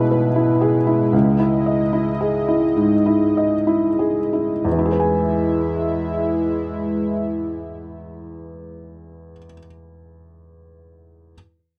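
A felt-muted upright piano sits up front, its soft, thin-felt tone close and mellow as it carries the accompaniment from the low register up to G#5. This is a tender, intimate neoclassical piano and strings piece in E major and 4/4, moving in rubato at roughly 60 to 80 BPM and slowing over its opening 4.7 seconds as the harmony shifts from E/B to C#madd9. A warm analog pad, also up front, holds sustained chords alongside, its smooth, detuned sawtooth and triangle blend rounded out by a sub octave, a slow attack, a long release and a gentle chorus. A second section settles back onto E, and the pad stops at 9.2 seconds while the piano continues alone until 11.3 seconds. The dry, close recording has the feel of a 1970s studio with just a touch of reverb, in a short passage cut from a longer piece.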